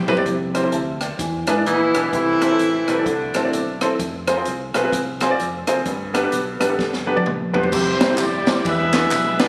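Soulful and uplifting, this snippet of uptempo gospel swings at 129 BPM in C major. An up-front, clear piano and a punchy, round fingered electric bass ride over an airy big-band drum kit with a high-tuned snare, while a distant, roomy horn section carries the melody and a warm, subtoned tenor saxophone with vibrato steps forward at 1.7 s. The horns return at 7.5 s, and a very quiet, lightly overdriven tonewheel organ with key click and rotary speaker joins dry tambourine and group handclaps at 7.7 s, all heard through scoring-stage reverb and the compressed club ambience of a phone recording.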